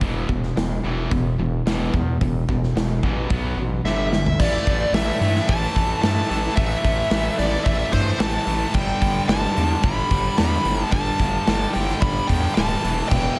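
A punchy, up-front rock drum kit drives this aggressive hard rock passage, cut from a longer piece, as two overdriven guitars (one bright, the other sludgy with slapback echo) churn out a background riff over a growling, thick FM bass, until a drum fill at 3.9 seconds brings in a dark, smooth lead guitar melody up front, the whole band filling a big arena sound with concert hall reverb.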